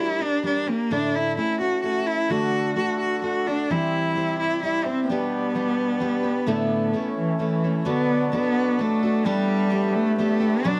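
Close, detailed microphones and light reverb give this gentle acoustic folk passage, cut from a longer piece, an intimate feel as it moves in 3/4 at 129 BPM in D major. Up front, a bowed cello carries the melody with vibrato, portamento and a soft attack, while a woody, full-bodied picked steel-string guitar with old strings supplies the accompaniment. At 2.3 s a reedy, mellow accordion enters with sustained chords, sitting slightly behind the other two.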